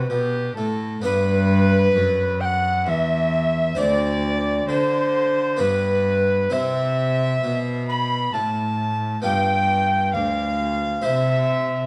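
An airy alto recorder leads this radiant, dance-like baroque-style sonata movement, its chiff, crisp attack and vibrato sitting close and up front at a rubato 66 BPM in 3/4, G major, tuned to A4 = 436 Hz. A dark, gut-string violin in period style carries the second line from a distance, while a reedy, bowed cello anchors the bass and a brilliant French-style harpsichord with octave strings fills in the plucked accompaniment. Cut from a longer piece, it moves into a new section at 1.0 s, and detailed close microphones capture a moderate recital-hall reverb.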